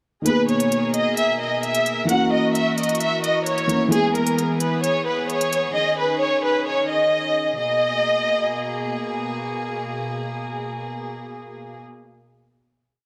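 A dark, boxy grand piano opens this menacing, hard-hitting trap piece in G# minor at 131 BPM in half-time, its mellow, short-sustained open chords looping through a low-pass filter and tape echo, soon joined by crisp electronic hi-hats with fast rolls. Up front, a lush violin section plays a smooth, vibrato-rich looping melody, also filtered and tape-echoed. A soft, floating string pad sits distant beneath them, played sul tasto, and holds the final chord from 7.6 seconds until the piece closes at 11.8 seconds in an echo-heavy, small-room mix.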